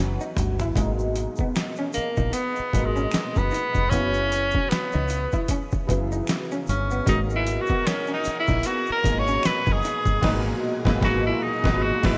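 Soulful and sultry, this short cut from a longer neo-soul and R&B piece moves at a relaxed 76 BPM in G# minor with a swung sixteenth-note feel. A drum fill on the gritty, overdriven boom bap kit opens things, its thumpy kick and gated-reverb snare sitting up front, while a round, punchy dub bass and a natural-toned grand piano with ensemble chorus lay down the F#7sus4 and G#m9 changes. A dark, lo-fi electric guitar with subtle chorus murmurs in the background, and an egg shaker with finger snaps adds a small-room acoustic texture until about 10.2 seconds. From 1.9 seconds a breathy tenor saxophone takes a jazz-style solo up front, with light vibrato, soft attacks and scooped notes. At 7.1 seconds a very quiet, swirling phased string machine and a distant, roomy horn section join with sustained chords and stabs, ahead of a band accent at the close. The whole mix carries a bright 1980s-style digital sheen within a lush hall reverb.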